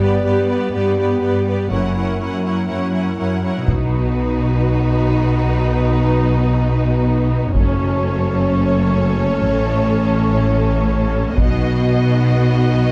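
A dark, epic orchestral film cue opens with the full string body and horns sounding together: up-front double basses and cellos anchor the low end, a focused viola section fills the middle, and a mellow French horn section holds sustained chords in the background. Above them, a clear, intense violin section carries a distant second line with vibrato, while the harmony moves from G to F#7. At 3.7 seconds a second violin section enters with the melody, its soft attack and smooth top giving it an expressive, lush quality. In the same moment, a taiko ensemble strikes with heavy sticks, returning in short bursts across the passage as the chords shift through B, F#m and A before landing back on B. The cellos are even and smooth and the basses bowed and clear, all set in a moderate scoring-stage reverb within a dark, warm production, in a passage cut from a longer piece.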